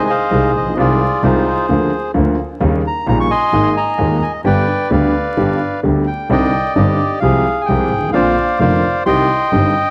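A reedy, band-limited, up-front bandoneon carries the melody in this sultry, tense tango excerpt in C minor at 131 BPM with a rubato feel, over a vintage concert grand piano with audible action noise and deep bass, and a dark, bowed sul tasto double bass with light vibrato and tube saturation, all heard through a light studio reverb with the vinyl crackle of a home cassette recording.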